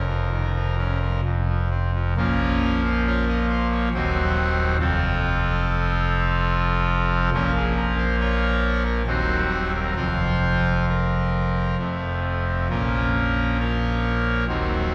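In a rubato 3/4 that drifts between 63 and 71 BPM, this dark, grave chorale-style classical passage in Bb minor, cut from a longer piece, is carried by a single pipe organ on a trumpet stop, sounding brassy and bright with a baroque voicing and a touch of chiff, spanning Eb1 to Eb5 and sitting up front. After a brief opening phrase, the harmony moves from 2.2 seconds through Bbm, Cdim/Eb, F and a Fsus4 before returning to Bbm. The organ is heard from further back in a wet church with a long reverberant tail.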